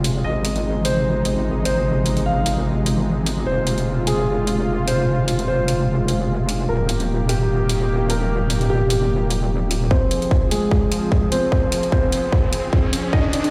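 Heavy and menacing, this half-time wobble dubstep fragment in F minor at 149 BPM sets a dark, mellow grand piano melody through a low-pass filter and digital delay over a lush, sidechain-pumping supersaw pad, metallic electronic hats and a saturated, detuned wobble bass with chorus and overdrive that drops out at 9.9 seconds as a punchy kick enters for a build-up with a filter sweep on the piano and a background riser from 11.6 seconds, all played on a big sound system in a bare room with large studio reverb.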